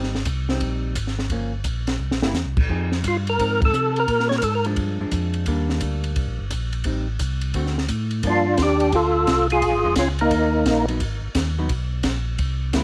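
Swinging and greasy, this brief cut from a longer soul jazz organ trio piece moves at a brisk 173 BPM in 4/4 with a moderate swing on the eighth notes. A mellow, round tonewheel organ holds down the bass line with a clean, dark tone colored by chorus vibrato and a slow rotary speaker, while a compact cocktail drum kit sits up front with a punchy kick, a high-tuned snare and dark cymbals, adding a fill at 2.0 seconds. A picked, hollow-body archtop guitar comps quietly underneath in a clean, electric voice. The lead organ, fat and lightly overdriven with key click and third-harmonic percussion, steps forward only in short phrases, first around 3.1 seconds near a band accent and again from 8.3 seconds as the harmony shifts into a new section. The chords move through jazzy sevenths and half-diminished changes, and the home cassette recording lends the guitar, drums and lead organ a tape-worn grit inside a lightly reverberant room.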